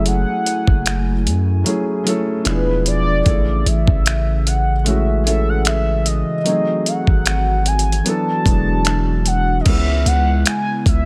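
Set in a digital ambience, this brief cut from a longer contemporary R&B piece feels romantic and smooth, riding a slow, gently swung sixteenth-note groove in 4/4. Up front, a gritty, overdriven sampler-style drum kit enters at 0.1 s with a thumpy kick, hi-hat, finger snaps and crash cymbal. Alongside it sits a deep, sine-toned 808-style bass whose long notes decay after a fast attack. A felt-muted upright piano supplies intimate accompaniment with its action noise audible, while a hollow, flute-like pad lies dark in the background, treated with chorus and sidechain pumping. Over this, a round, horn-like synth lead carries the melody with a soft attack, vibrato, portamento, a filter sweep and chorus, as the harmony moves through chords such as F#m9, Amaj7 and G#7b9 before settling on C#m7 at 9.7 s.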